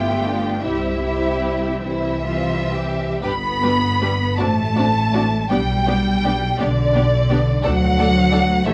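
Classical slow romantic string orchestra movement in a tender, lyrical 6/8 with free rubato, where an expressive, vibrato-rich violin section sings the melody over a focused second violin line, smooth close violas, even cellos and a lush, up-front double bass section, all bowed in light reverb and heard through a worn, warbling old cassette tape with drifting pitch, moving into a new section at 3.2 s in a fragment cut from a longer piece.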